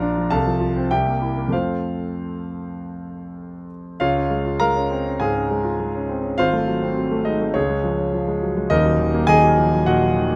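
A concert grand piano opens alone in F major, playing a heroic, sparkling classical virtuoso study in 4/4 at around 95-104 BPM with a free, rubato feel. At 4.0 s the music shifts to Db major, and the piano ranges from a deep bass up into its upper register before this cut from a longer piece ends at 10.4 s. Close, detailed microphones and little reverb keep the piano's natural, up-front tone vivid.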